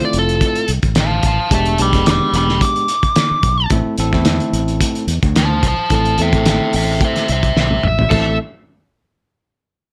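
Straight-eighth soul blues with a smoky, brooding mood, cut from a longer piece: a biting, overdriven lead guitar carries the melody up front over bell-like tine electric piano accompaniment, a round fingered electric bass and a cloth-damped, thuddy drum kit with a fat snare, dark cymbals and a gritty, lo-fi small-room sound, moving from Fmaj7 through E7#9 to Am with little reverb, until a drum fill at 7.6 seconds leads into a new section where a dark, overdriven slide guitar enters at 8.1 seconds.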